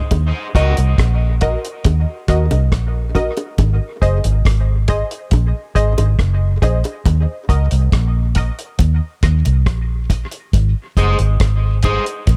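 A straight 4/4 groove at 69 BPM in Eb dorian anchors this heavy, hypnotic dub reggae excerpt, where a cloth-damped, thuddy drum kit with a tight kick, hi-hat and rim click sits up front beside a dark, round, foam-muted fingered electric bass, while high-tuned bongos tucked in the background, muted sawtooth chord stabs with chorus and dub echo, and brief bursts of twangy, slightly broken-up guitar at 0.6 and 11.0 seconds drift through an echo-heavy mix over an Ebm to Ab progression, with a filter sweep running from 3.6 seconds onward.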